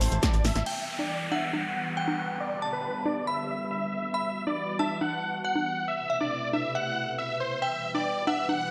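A huge, bright supersaw lead carries a euphoric melody, pumping against the sidechain through digital delay, while a glassy FM synth bell plays a second line with chorus and tape echo, and a thick, airy unison pad holds sustained Amadd9, Emadd9 and G chords with phaser. This driving uplifting trance excerpt runs at 138 BPM in E minor. A tight sawtooth sequencer bass and a grainy shekere sound only until 0.6 s, and an overdriven analog drum machine with punchy snare, congas, hi-hat and crash plays a fill at 0.4 s. From 0.7 s filter sweeps move across the lead and pad as an electronic downlifter sounds until 4.1 s, all inside a lush hall reverb.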